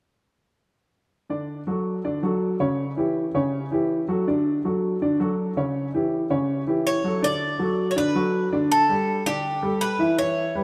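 A dark, boxy grand piano opens at 1.3 seconds with arpeggios over D major and a rootless A7, its worn, short-sustained tone carrying audible action noise. At 6.9 seconds a picked Cuban tres joins with a metallic, double-strung melody, as the harmony moves through D to Gadd9. This relaxed, danceable latin fragment at 162 BPM sits in a wet plate reverb, heard from further back in the room.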